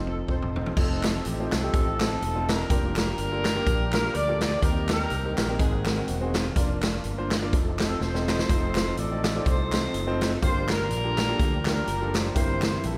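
A roomy church or concert-hall sound with moderate reverb surrounds this short, uptempo gospel cut, which moves in a swung 4/4 with a reverent yet jubilant spirit. A mellow, vintage-toned horn section carries the melody in tight jazz-style voicings, while a concert grand piano with audible action noise, deep bass and long sustain fills out the accompaniment. Behind them, a lightly overdriven tonewheel organ holds sustained chords in the background, its percussive second-harmonic attack colored by chorus vibrato and a slow rotary speaker. A punchy fingered electric bass anchors the low end, and an up-front big-band drum kit with a medium-tuned snare and punchy kick opens with a fill in the first 0.8 seconds and adds another around 8.0 seconds. Very quiet, hollow group handclaps join at 1.0 seconds as the harmony moves from F7 through Bb, Eb and Ab colors before settling toward Gm7 and C7/G.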